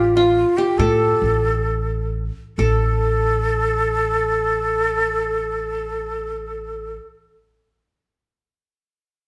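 Unmetered and in free time, this short cut from a longer Arabic piece drifts with a hypnotic, soulful pull, slowing down over its first 2.6 seconds before a new section begins at 2.6 seconds. The qanun carries the melody, its triple strings played with fingerpicks for a bright-edged, glinting tone that sits up front in the mix. A breathy ney shapes a second line alongside it, its end-blown reed cane sound marked by vibrato and a crisp attack. Beneath them, a pizzicato upright bass with steel strings gives a woody low foundation. All three play together throughout, captured as a band performing live in one room, bathed in a wet large-studio reverb with a 1.1-second decay.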